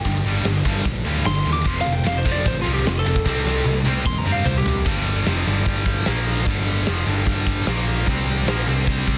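Menacing and heavy, this hard rock excerpt in G minor drives at 150 BPM in a straight 4/4, opening with a twangy, slightly broken-up lead guitar solo with slapback echo that ends at 4.8 seconds as a drum fill closes the first section, while two distorted high-gain rhythm guitars (one scooped and set in the background) grind out the riff over a growly picked bass and a huge, up-front arena drum kit with a punchy kick, bright cymbals and a pumping room sound, all sealed in a dense, heavily limited modern master.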